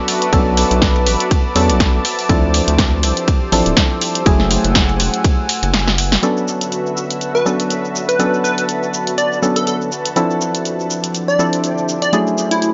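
Hypnotic, smooth deep house with a gentle swing, where a mellow analog pad with sampler grit, a hollow organ stab with dub echo and a blurred granular cloud pad breathe under sidechain pumping, a round, deep bass, a punchy up-front kick, an overdriven drum machine and a gritty sampler kit in the background drive the groove until the kick drops out and a fill arrives near 5.9 seconds, and then a catchy, detuned unison lead with cassette tape echo takes the melody from 7.3 seconds as a filter sweep moves over the pad.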